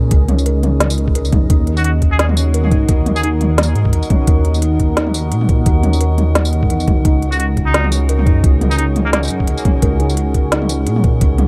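A half-time drum and bass groove at 173 BPM with a 16th-note swing drives this dark, cinematic Eb minor excerpt, where a gritty, pitched-down kick and a produced kit of woody snare, crisp hats, tambourine and toms sit under an up-front, rumbling detuned saw bass, a mellow felt-muted upright piano arpeggiating through digital delay, a moody ambient pad with chorus, reverb and sidechain pumping, an eerie metallic drone entering at 2.0 seconds, and a nasal straight-muted trumpet with lo-fi sampler grit voicing jazz-style phrases from 1.8 and 7.3 seconds over chords moving from Db5 to Ebm7 and back.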